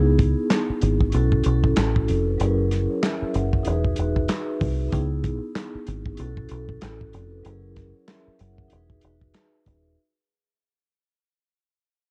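Captured as a home cassette recording, this tough, dark boom-bap hip-hop excerpt fades out throughout as a swung, dry soul drum kit of tight kick, medium-tuned snare, hi-hat and handclaps sits up front beside a round, punchy, foam-muted fingered electric bass with transformer saturation, while a mellow, ringing vibraphone played with soft mallets and a slow motor vibrato, filtered and tape-worn in a boxy small room, moves through C#m7, B7sus4, F#7 and Emaj7.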